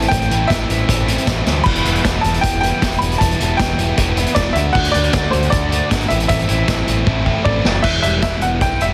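Bittersweet and restless, this indie rock fragment sets a bright, woody upright piano melody with analog delay over a biting, double-tracked overdriven guitar riff, a growling overdriven picked bass and an up-front vintage drum kit with dark cymbals and a gritty, saturated tone, whose fill from 7.1 to 7.8 s leads into a new section at 7.8 s, all within a dry, dense and heavily limited modern master.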